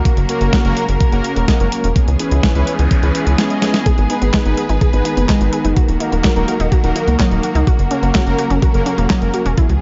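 A tight, punchy sawtooth sequencer bass drives this nostalgic, danceable italo disco excerpt at 126 BPM, set over a thumpy electronic kick and a tape-colored 12-bit drum machine of handclaps, hi-hat and medium-tuned snare re-recorded in a large room, with fat, warbling analog synth brass stabs carrying chorus and tape echo, smooth, distant bowed strings holding sustained chords, a background noise sweep from 2.7 to 3.9 seconds beneath a drum fill, and lush, detuned unison pluck arpeggios with tape echo entering at 3.9 seconds, all moving through F#, C#m7, G#m and D#m in a dark production with light reverb.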